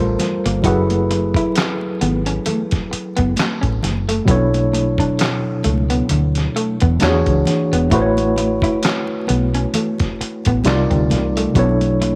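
A worn, slightly out-of-tune tine electric piano sits up front from the start, joined by a round, foam-muted dub bass and high-tuned congas tucked in the background, setting an introspective, sultry R&B and neo-soul groove at 66 BPM in B dorian with swung sixteenths. At 0.2 seconds, a gritty, overdriven sampler-style kit with a thumpy kick, snare, hi-hat and handclaps comes in, while a slightly broken-up electric guitar through a small old amp adds a second line touched with spring reverb. Chords move through colors such as Gm11, F#m11, Bm11 and E13, and light reverb and vinyl crackle lend this cut-down passage a dusty sheen.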